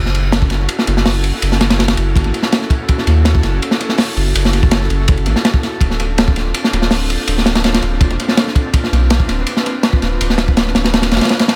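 A straight 4/4 groove at 164 BPM drives this raw, frenetic drum and bass and jungle fragment, cut from a longer piece. A crunchy, saturated breakbeat kit sits up front from 0.1 seconds, with a tight kick, a medium-tuned snare, hi-hat and dark ride cymbal, its gritty, mid-forward tone softened by a rolled-off top and thrown into dub echo. Beneath it, a soft dub sub bass, deep and round with a fast attack, holds sustained notes from D1 to D#2 until 11.2 seconds. Further back, an airy, breathy pad spreads slow-attack chords between C4 and B4, its detuned, full-bodied layers coloured by chorus, ring modulation, a noise layer and vintage 12-bit sampler grit. The harmony moves from F#m7 to Dm7 at 5.8 seconds, all set in a small room ambience with an echo-heavy mix.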